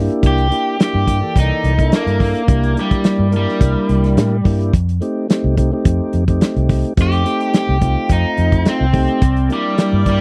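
A tonewheel organ with a slow rotary speaker and a dark, foam-muted fingered electric bass open this laid-back, soulful straight-eighth soul blues at 107 BPM in C mixolydian. A muffled soul drum kit, with a tight kick, medium-tuned snare and hi-hat, joins almost at once, its top rolled off and sitting up front with the round, punchy bass. At 0.3 seconds an overdriven semi-hollow guitar takes the lead with a picked, hollow-bodied solo bathed in spring reverb, while the clean organ holds the accompaniment beneath it. The harmony moves from C9 to F9 and back to C9, and a brilliant horn section slips in at 9.2 seconds with quiet, punchy sustained chords carrying a light vibrato. The sound is dry and close, in the manner of a 1970s studio, and this short cut comes from a longer piece.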